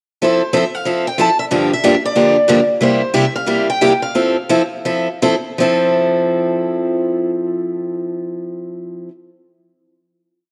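Two picked steel-string acoustic guitars open this short, playful swing jazz piece together at 0.2 s, a bright, fresh-stringed parlour guitar up front playing four to the bar with short accents on two and four beneath a boxy, cassette-tinged lead whose motif-based call phrases carry audible finger squeak over Fmaj7, Gm7 and C7, all slowing down before the melody drops out at 5.2 s and the rhythm guitar's final chord lingers in a lush hall reverb until 9.1 s, with the whole thing captured as a homely cassette recording.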